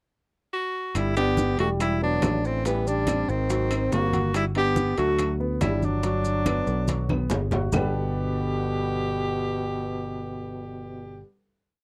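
A clear tenor saxophone opens this sunny, danceable Afro-Cuban jazz piece with scooped notes and light vibrato, soon joined by a growly, punchy picked electric bass playing a tumbao that anticipates the chords, a brilliant trombone harmony line mostly in sixths, and a background piano montuno in octaves, while congas with slaps, round bongos, ringing metal-shell timbales, woody claves in a two-bar time line and grainy maracas drive the groove until a drum fill at 6.9 seconds leads into a sustained final chord from 7.7 seconds, all captured in a dry, close 1970s-style studio sound with light reverb.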